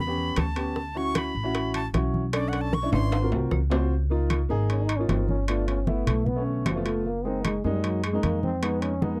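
A breathy, bright jazz flute and a dark, pizzicato upright bass open this sunny, danceable Afro-Cuban jazz cut at 153 BPM, joined by an up-front upright piano with long sustain, tight high-tuned bongos, soft-handed congas in the background, ringing, saturated timbales and faint woody claves. The flute solo runs to 3.9 seconds and closes with a drum fill, and at 4.7 seconds a mellow, distant trombone solo enters, whispered and intimate. The sound is that of a dry, close 1970s-style studio with light reverb.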